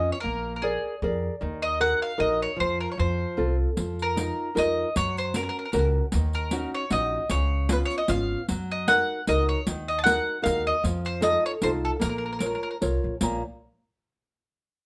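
A picked bowl-back mandolin with doubled strings carries the melody up front in this romantic, wistful Italian folk serenade, a short excerpt in Bb minor and 3/4 at 153 BPM with a loose swing and a rubato feel. Also up front, a small-sounding nylon-string guitar fingerpicks the accompaniment with audible finger squeaks, over the woody, thumpy pizzicato of a dark gut-string upright bass, while a close, dry riq with bright jingles and hard hands joins at 3.8 seconds. The harmony drifts through Bb7, Gb and Db7 before settling on Bbm at 12.0 seconds, set in a moderate studio reverb.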